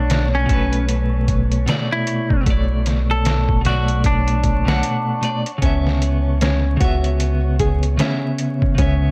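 A swung 76 BPM groove in 4/4 drives this brooding, cinematic trip hop excerpt, where a muffled, pitched-down sampler-style drum kit with a thumpy kick and a round, punchy dub bass sit up front beneath a dark, scooped clean electric guitar with tremolo, a hollow-body semi-hollow guitar carrying the melody through dub echo until 5.5 seconds, a small fingerpicked nylon-string guitar taking up arpeggios with echo from 5.6 seconds as the harmony moves from Bm7 to C#m7, and an airy, breathy wind-like texture drifting in the background, all over light reverb and vinyl crackle.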